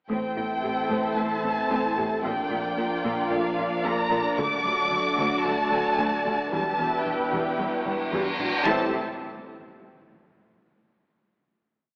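Tense and relentless, this complete hybrid orchestral and electronic film cue moves in a straight 4/4 through a short theme that settles onto a final chord at 8.7 seconds. Up front, a warm, lush symphonic violin section carries the expressive bowed melody with a soft attack and vibrato, while a rich, close studio violin section sustains a second line with portamento in the background. Beneath them, a dark viola section drives a very quiet rhythmic ostinato, and rich cellos and double basses hold a smooth bowed bass, joined by a deep, round sine sub bass as a low drone. Very quiet French horns, distant and roomy, and clear trombones with light vibrato hold slow swelling chords, as a sawtooth analog pad with chorus and a moving notch sustains mellow harmony and a tine-like FM synth pluck, also chorused, pulses an arpeggiated ostinato. A reverse cymbal rises from 7.7 seconds into an electronic low impact at 8.7 seconds, and the whole mix sits in a wet scoring-stage reverb filtered through an AM radio sound.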